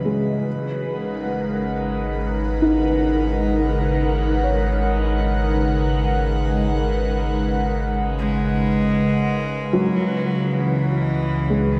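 Melancholic and serene, this ambient excerpt drifts at 51 BPM in 4/4, moving from G#m9 to C#m9 under a dark production bathed in a cathedral reverb with a 5.2-second tail. An airy, breathy pad with chorus and phaser sustains chords up front while a felt-muted upright piano, boxy and intimate, plays arpeggios through a diffuse ambient delay. A round analog bass sits deep beneath a warbling, organ-like drone in the background, and at 8.2 seconds a reedy, gut-string cello enters with a close, bowed melody.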